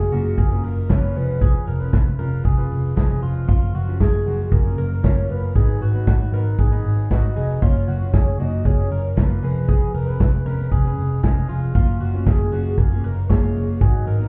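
A punchy vintage drum kit sits up front in this bright, youthful stretch of jangly indie pop, its medium-tuned snare, hi-hat and kick pumping in a small room with a rolled-off top. Just beneath it, a dark, round electric bass, foam-muted and amped, holds down the low end in a straight feel. A picked steel-string acoustic guitar fills in the chords with an auditorium-like openness, a squeak of fingers on its strings audible. A clean, compressed twelve-string electric guitar spins arpeggios through spring reverb and digital delay. Over them, a warbling synth lead blends triangle, sawtooth, square and sine tones with a sub octave, carrying a sustained, nostalgic melody colored by chorus and vibrato. The whole mix sounds as if heard muffled through a wall, bathed in club reverb, a short cut from a longer piece that cycles between major-seventh, minor-seventh and dominant chords.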